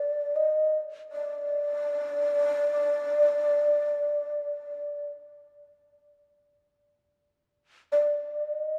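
Austere and calm, this brief fragment of Japanese traditional chamber music unfolds in free time, cut from a longer piece. A lone end-blown bamboo shakuhachi carries the whole 8.8 seconds, its breathy, hollow straight tone sitting up front with a crisp, chiffy attack and rolled-off highs as it dwells between D5 and Eb5. A wet church reverb with a 3.7-second decay lets each note hang in the space around it.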